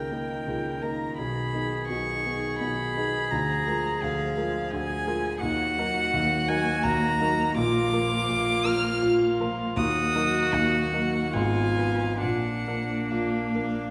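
A dark, intimate violin carries the melody up front, its soft-attacked, airy sul tasto bowing touched with light vibrato, in this yearning, elegiac slow romantic movement for piano quartet in Eb minor, moving in a rubato 3/4 at 65-88 BPM. A mellow concert grand with deep bass and short sustain sits up front in the accompaniment beside a pure, floating viola, while a woody cello sings a second line with vibrato in the background. The whole passage bathes in the wet bloom of a scoring stage, and it is cut from a longer piece.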